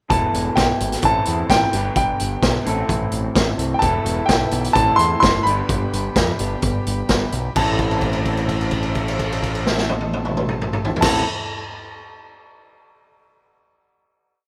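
Bittersweet and moody, this short indie rock piece at 128 BPM in A minor sets a clear, woody upright piano melody with tape echo over a raw, punchy garage drum kit, growling overdriven bass driving in eighth notes, and two dark, slightly broken-up electric guitars ringing out chords through a small old amp, while a buzzy, very quiet combo organ joins at 3.8 seconds before everything settles on a held final A minor chord from 7.6 seconds in a rough home demo mix.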